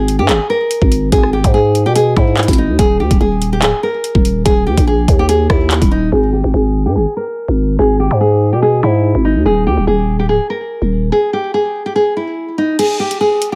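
Cold and dark, this half-time drill excerpt at 144 BPM sets a bright, classical nylon-string guitar melody, fingerpicked with audible finger squeak and treated with a low-pass filter and delay, over a growling, buzzy, saturated 808-style bass with a fast attack and a knocking, tape-tinged electronic kit of kick, metallic hi-hats, rim click, handclaps and crash, as the drums drop out at 5.9 seconds, a filter sweep runs over the guitar from 6.1 seconds, and the kit returns at 12.8 seconds with its kick muted, all in a dry mix with each part up front.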